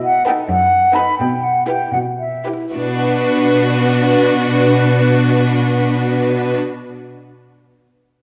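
Heard through a worn, warbling cassette haze with the wet bloom of a scoring stage, this urgent, dramatic classical-period orchestral fragment in a rubato 6/8 slows over its opening seconds as an up-front cello section and an airy, distant flute begin together, joined at 0.3 s by a lush violin melody, a second violin line and a clear, focused viola accompaniment, with harmonies shifting from B7 through Em/B to Bm at 2.7 s.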